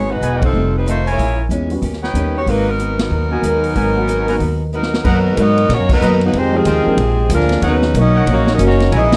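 A clear, tight saxophone section carries the melody over a woody, thumpy upright bass and a boxy, very quiet picked acoustic guitar, joined almost at once by soft-attack trumpet stabs and a swinging drum kit with dark cymbals and a punchy kick, while a warm grand piano with deep bass accompanies in two stretches and a warm trombone section with vibrato adds a background second line from 3.0 seconds in this sultry, brassy big band swing excerpt in G# minor at 186 BPM, marked by band accents and a drum fill at 4.7 seconds and set in light reverb on a dry, close 1970s-style studio sound.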